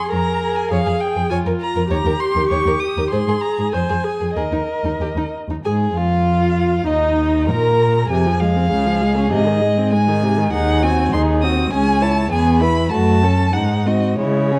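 A spirited, lively classical-period string quartet movement in 2/4, played with rubato, cut from a longer piece. A rich, expressive first violin carries the melody with vibrato and portamento above a dark, intimate second violin with a soft attack and airy bow, while the viola adds vibrato-laden accompaniment and an up-front, smooth cello anchors the bass. The recital hall gives a moderate, warm glow, and after a new section begins at 5.7 s the harmony turns toward C#m, E and F#m before closing on G#7.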